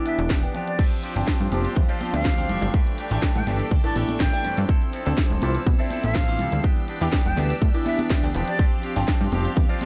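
A punchy, up-front electronic kick anchors this groovy, funky filtered disco house excerpt alongside a house kit with a cracking snare, crisp hats and crash, plus ringing tambourine and congas set back in the mix. A plucky analog bass, a twangy direct-recorded clean guitar riff and an intimate baby grand piano with audible action noise drive the groove through Em7, G7sus4, A7sus4 and Dm9, each pumping against the kick and dulled by a low-pass filter, the piano also phased. An airy, reedy flute carries the melody from 0.1 to 8.6 seconds, while a swirling, vintage string machine with chorus, phaser and 12-bit grit enters at 0.8 seconds to sustain chords in the background.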